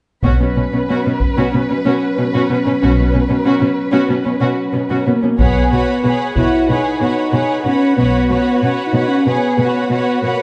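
A mellow, close-miked French horn section holds sustained chords over a Bsus2 opening in this adventurous, heroic cinematic film score cut from a longer piece, moving at 93 BPM in 4/4 in B major. A dark, distant violin section carries the expressive melody with vibrato, a rich, smooth second violin line joins it, and a close viola section adds soft-attack accompaniment with portamento, all over a bowed bass of warm, even cellos and warm, expressive double basses, the basses stopping at 8.3 seconds. A taiko ensemble hit with hard sticks in a small room opens each of the two sections with a short burst, at 0.2 and 5.4 seconds, and a moderate scoring-stage reverb gives the orchestra a lush, spacious sound.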